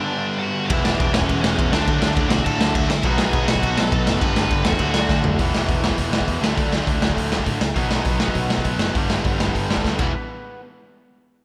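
The raw garage drum kit sits up front in this energetic, upbeat punk rock excerpt at 203 BPM in a straight 4/4. Its boomy kick, medium-tuned snare, crash, hi-hat and toms sound saturated and gritty, with a rolled-off top, a pumping small-room character and two short fills along the way. A dark, smooth lead guitar opens the piece with an overdriven, picked melody colored by digital delay, and it drops out at 5.2 seconds. Two biting overdriven guitars play picked riffs in the background: the higher one, carrying a slapback echo, starts at the very beginning, while the lower one joins along with the bass and drums at 0.7 seconds. The amped electric bass is growly and punchy beneath them, following a chord progression that moves through G, E, D and B. The mix has a big arena sound with lush hall reverb, and after the rhythm section stops, one guitar briefly rings on alone.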